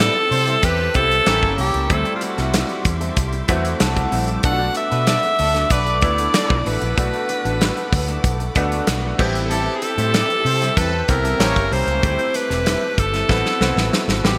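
Slick and urban, this polished 1980s jazz-funk pop passage at 95 BPM in A dorian puts an edgy, punchy alto saxophone melody with vibrato and delay up front, backed by a tight horn section second line with delay that drops out at 11.7 seconds, a brilliant baby grand piano with audible action noise and analog chorus that plays a fill at 3.2 seconds, a focused bowed string section holding sustained chords, a slightly broken-up picked guitar riff with lush chorus, a dark, round foam-muted fingered bass, and a mid-forward studio drum kit with a punchy kick and gated reverb that closes with a fill at 13.3 seconds, all set over moves from Am7 through A7b9, D9sus4 and Bm7 in a lush hall with bright digital sheen.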